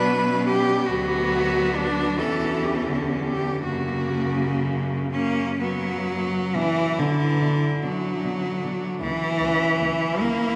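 A classical passage for cello ensemble, cut from a longer piece, unfolds in an elegiac, yearning mood with a slow, rubato lilt in 6/8. Four bowed cellos, each played by one player with vibrato, share the texture: a smooth, close melody sits over a focused second line in the background, while a rich, even accompanying cello stands up front and a clear, focused bass anchors the harmony below. The whole ensemble blooms in the long, wet reverb of a church or concert hall, and the passage moves into a new section at 6.5 seconds.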